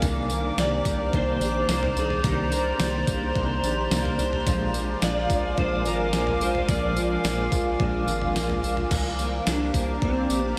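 A warbling, lo-fi pad sits up front in this dreamy, floating dream pop excerpt at 108 BPM, holding sustained chords with a slow attack, chorus and its own reverb that give it a nostalgic, vintage tape-like quality. Beneath it, an overdriven, gated 80s digital drum machine supplies a thumpy kick, a gated-reverb snare, tambourine, toms and crash cymbal, while a round, deep analog bass anchors the low end. A picked twelve-string acoustic guitar plays shimmering, octave-doubled arpeggios through ensemble chorus and diffuse ambient delay, and a dark, clean electric guitar adds accompaniment with tremolo and subtle chorus until 8.9 seconds. From 0.6 seconds, a slide lap steel guitar carries the melody in the background, sharing the acoustic guitar's chorus and delay. The harmony moves from Cm9 to Bb7 at 4.5 seconds and back to Cm9 at 8.9 seconds, and the whole mix is soaked in a huge, lingering ambient reverb.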